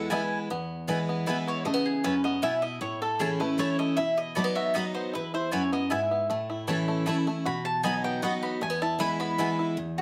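Bluegrass in E major at 155 BPM in 3/4, this virtuosic, rustic excerpt is cut from a longer piece and centres on a mandolin solo running from 0.5 to 9.8 seconds. The lead mandolin carries the melody with a round, double-string tone, set in plate reverb. A second mandolin adds bright, woody stabs, while a fingerpicked banjo spins twangy, percussive arpeggios. Up front, a picked dreadnought acoustic guitar with fresh strings gives full-bodied, bright accompaniment. A clear, nasal fiddle with light vibrato and an earthy, smooth top sits in the background, sounding only briefly at the start and at the very end. The chords move through E, C#m7, A, Bsus4 and B before settling back on E, all within a moderate studio room.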